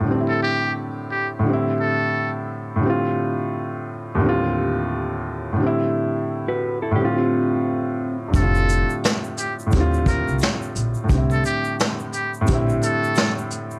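Lo-fi hip hop with a nostalgic, cosy mood and a swung feel, cut from a longer piece and built on a felt-muted upright piano whose soft, intimate chords carry audible action noise under a low-pass filter and plate reverb. A buzzy, breathy trumpet with a metal mute states the jazz-style melody at the start, and a dark, clean electric guitar adds a brief second line through analog delay around 6.5 seconds. At 8.3 seconds a woody pizzicato upright bass, a vintage drum kit played with brushes, with a tight kick and rolled-off top, and a grainy egg shaker in the background all enter as the trumpet returns over add9, 6/9 and major-ninth chords.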